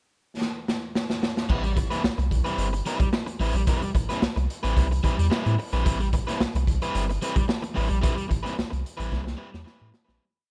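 Funk at 110 BPM in A minor with a driving feel, opening on a raw garage drum kit that plays a fill from 0.4 seconds during the pickup bar before a round, deep analog bass with a filter sweep and a crunchy overdriven guitar enter at 1.5 seconds on an Am9 groove, the bass riding a syncopated riff anchored on the downbeat with muted ghost notes and chromatic approach notes, the guitar scratching out sixteenth-note funk rhythm, and the saturated, boomy, small-room drums keeping a tight sixteenth-note groove under a dark, dry production until a closing fill at 9.1 seconds as the whole piece fades out.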